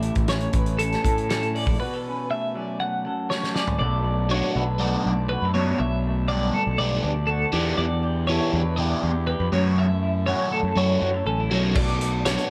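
A dry cut from a longer math rock and midwest emo piece in B minor, moving at 121 BPM in a straight 4/4 with an intricate, restless mood. A bright, twangy twelve-string electric guitar plays compressed arpeggios with tremolo and analog delay over a dark, slightly broken-up electric guitar with vibrato through a small old amp, while a punchy fuzz bass with overdrive sits forward and a loose, gritty indie drum kit with a fat snare and rolled-off top plays through a break and fill ending at 3.8 seconds, then returns at 11.8 seconds. A crunchy, double-tracked overdriven guitar with phaser enters at 4.3 seconds with an up-front riff as the chords move from Bm7 through Gmaj9/B, Em7 and F#m7 back to Bm7.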